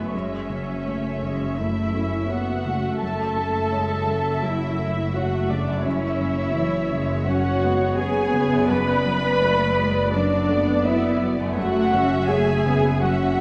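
A wet scoring-stage reverb surrounds this cinematic fragment in F# minor, which moves at a rubato 84 BPM with a longing, sorrowful mood over F#m7, C#m/F#, Bm7/F# and back to F#m7. Muted violin sections carry a veiled, close melody with vibrato and a soft-edged, smooth-topped second line, while con sordino violas and cellos sit distant beneath and a lush double bass section holds a low F#1. A dark, mellow baby grand piano plays intimate background accompaniment with audible action noise, and a very quiet concert harp adds bright, ringing fingerpicked arpeggios throughout.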